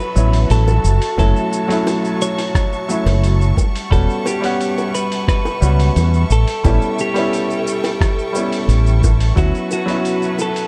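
Sunset chillout with a smooth, wistful mood, in which a clean, picked electric guitar with digital delay carries the melody over clear grand piano chords and sustained, bowed studio strings with vibrato, while a round, punchy fretless bass with analog chorus sits up front from 0.2 seconds, a thumpy, gritty electronic kick joins at 1.2 seconds, and a dusty, tape-warm sampler-style kit of hi-hat, rim click and shaker mingles with soft, high-tuned bongos in the background, all joined by a faint, breathy wind-like noise layer in a dark, lightly reverberant excerpt of a longer piece.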